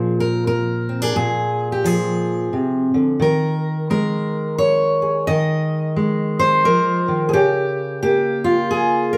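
A fingerpicked steel-string dreadnought acoustic guitar sits up front, full-bodied with audible finger squeak, carrying this intimate, haunting folk fragment cut from a longer piece alone at 87 BPM in a swung 3/4 in Bb dorian, moving from Bb7 to Ebsus4 at 3.2 seconds and Bbm/Db at 7.3 seconds, framed by a moderate large-studio reverb with a live-room feel.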